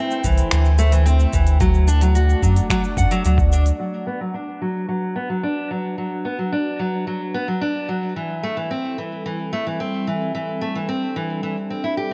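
Hopeful and gently nostalgic, this folktronica excerpt moves at 110 BPM in a straight 4/4. A full-bodied, fingerpicked steel-string acoustic guitar plays up-front arpeggios with delay over a warbling, detuned lo-fi pad thick with chorus and phaser, while a crisp-hatted electronic kit of finger snaps, hi-hat and shaker adds a light pulse. A round sine sub bass and a thumpy, muffled kick anchor the opening Am7 to D before the kick drops out around 3.5 seconds and the bass around 3.7, and from 3.8 seconds filter sweeps wash over the guitar and pad through Bm/F# and back to Am7, all in a dark, softly reverberant mix.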